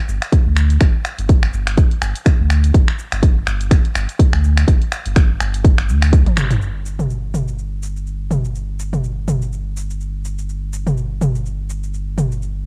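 A dry home cassette recording carries this earthy, driving afro house excerpt at 124 BPM in 4/4, with a 56% swing on the sixteenths. A round, sine-like sub bass with a fast attack sits up front, sustaining and pumping against the sidechain. A layered electronic kit of finger snaps, hi-hat, shaker and toms, plus a punchy, up-front kick, carries tape-tinged studio reverb. The kick drops out at 6.2 s, just before a drum fill at 6.3 s and a band accent at 6.4 s lead into the second half at 6.6 s.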